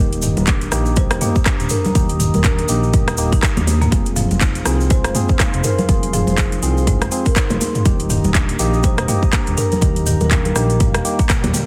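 This earthy, hypnotic afro house excerpt opens at 0.0 seconds with a plucked, hollow-bodied kalimba melody ringing through delay in the background, woody marimba arpeggios played with medium mallets, worn and slightly out-of-tune tine electric piano stabs lightly overdriven through a combo amp, and a smooth sawtooth-and-square synth bass with a ring-modulated edge. The house drum kit enters with handclaps, metallic hi-hats, rim clicks and toms, joined by a grainy tube shaker, thick-skinned high-tuned congas sitting in the background, and a punchy, tape-warm electronic kick up front from 0.5 seconds. A deep, moody analog pad with a slow attack and a sub octave sustains chords through chorus and phaser. The bass, marimba, electric piano and pad pump against the sidechain. At 122 BPM in 4/4 with a 58% swing on the sixteenths, the harmony moves from Eb to Fm and back to Eb within a single section. 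The mix has light digital ambience and a heavily compressed, radio-like sound.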